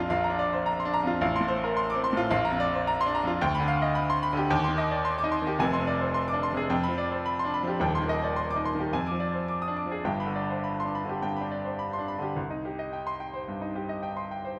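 A classical virtuoso piano study, stormy and passionate, moving at 108 BPM in 4/4 with a rubato feel and settling into C minor from 3.4 seconds. A clear, present grand piano plays alone and up front, ranging from deep bass to high treble. Its harmonies pass through dominant and diminished colours before resolving to C minor at 12.4 seconds, all within a moderate recital-hall reverb, in this brief excerpt cut from a longer piece.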